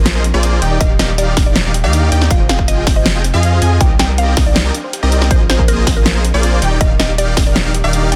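A lush, euphoric future bass excerpt opens at once with huge, detuned supersaw chords carrying the riff, given a gritty vintage sampler edge and pumping against the beat. Beneath them sits a deep, thick saturated sub bass placed up front, while a woody, mallet-like synth pluck sings the melody in the background through chorus, phaser and dub echo until 7.6 seconds. A very quiet, bright unison pluck spins arpeggios alongside, joined at 0.1 seconds by a tine-like, warbling thumb-piano-style pluck with a dark cassette character, chorus and echo. The big-room drum kit brings hi-hats and a massive, softly clipped snare in a half-time feel, and a punchy layered electronic kick arrives at 0.8 seconds. The harmony drifts through rich suspended and seventh chords, and the dense, heavily limited mix keeps reverb to a minimum.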